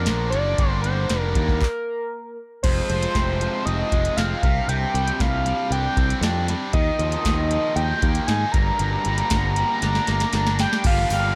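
Indie rock with a cool, bittersweet mood, this short cut from a longer piece moves in a straight four-beat feel over a progression running from Bb and Gm through Fm, Csus2 and Ebsus2 before returning to Gm. Up front, a gritty, screaming synth lead with a guitar-like, saturated tone carries the melody, its sawtooth and pulse waves thickened by a sub octave, chorus and vibrato. Beneath it, a biting overdriven guitar picks a bright riff, while a raw, dark garage guitar sits in the background with a lo-fi, chorused edge. A growly fingered bass and a soft vintage rhythm box, with its deep kick, crisp snare, handclaps, metallic hats and crash, anchor the groove under light reverb. The band halts for a stop from 1.6 to 2.6 seconds, a drum fill arrives at 9.8 seconds, and a very quiet, jingly tambourine slips in at 10.8 seconds just before the close.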